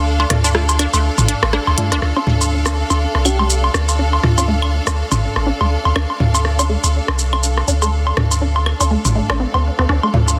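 A swung 4/4 pulse at 122 BPM drives this hypnotic, sparse minimal techno excerpt in D minor, tuned slightly flat of standard pitch, with two electronic kits: a clicky one of hi-hat, rim click and shaker, and a layered, tape-tinged one of claves, rim click, toms and woodblock that sounds re-recorded in a small room, both with soft clipping on the snare. A punchy sine sub bass with a pitch-drop attack sits up front and runs throughout, while a clear, bowed symphonic string section holds a smooth, even texture with light vibrato. A juicy, squelchy sawtooth pluck carries the riff through chorus and digital delay, and from 2.0 seconds a filter sweep moves across it after the opening drop. A muted, nasal dub chord stab with phaser and tape echo sits in the background, heard from 0.3 to 1.9 seconds and again briefly near the close. A round, keys-like FM lead surfaces for a single brief phrase from 3.3 to 4.4 seconds, softened by chorus and tape echo. 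Light reverb and digital ambience frame a dense, heavily limited modern master.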